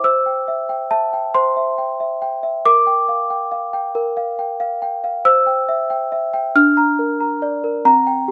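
A worn celesta plays alone in this innocent, tender classical lullaby in a straight 6/8, its bell-like, slightly out-of-tune tone and soft felt hammers sitting up front in a moderate spring reverb across a brief fragment cut from a longer piece.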